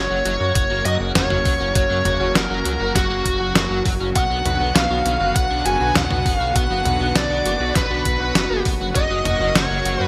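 A dark, distorted lead guitar carries the melody up front from the first moment of this nostalgic, uplifting synthwave piece in F# major at 100 BPM, shadowed by an airy, dreamy lead with vibrato and portamento, a soft, round pluck playing arpeggios, a picked overdriven guitar riff and a glossy, detuned synth bass with sidechain pumping. A lush, thick sawtooth pad with slow attack holds sustained chords in the background, while a tape-tinged 8-bit drum machine brings hi-hat, snare and toms and a thumpy electronic kick joins at 0.6 seconds. The harmony moves from F# to Bm at 4.2 seconds and back to F# at 9.0 seconds, all framed by light reverb and bright 1980s-style digital production.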